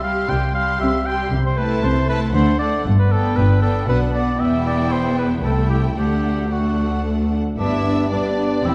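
Cheerful and graceful, this brief excerpt from a classical-period orchestral movement in G major moves at a quick 116 BPM in 3/4 with a rubato feel. Lush, expressive violins carry the melody over a smooth second violin line in the background, a soft-edged oboe line, focused violas, even cellos and close double basses, until at 7.6 s an airy flute, a clear clarinet, a present bassoon and mellow French horn chords join for the final second, set in a dark, reverberant scoring-stage sound.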